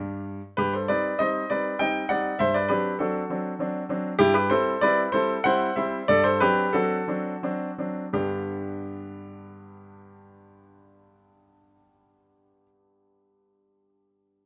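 Playful and cheerful, this short rubato cut from a classical-period piano sonatina in G major and 3/4 time moves at 83 to 101 BPM, its solo concert grand sounding clear, polished and up front with deep bass and short sustain in light reverb, ranging from G2 to G5, slowing down between 3.3 and 8.2 seconds before arriving at a G chord at 8.2 seconds.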